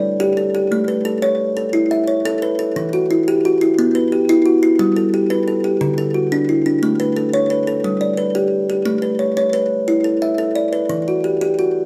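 This southern African traditional piece moves at 118 BPM in a straight 12/8, setting a hypnotic, rippling mood in A mixolydian. A lone kalimba carries everything from 0.0 to 11.9 seconds, its woody tone framed by a hollow-box resonance and a bright thumbnail pluck that keeps each note ringing across a range from D3 to E5. The harmony circles through A, Em, G and D, with the opening phrase returning at 8.9 seconds to repeat its pattern. A slapback echo doubles the kalimba's notes, while it sits up front in a small, reverberant room heard from further back. The passage is a short cut from a longer performance.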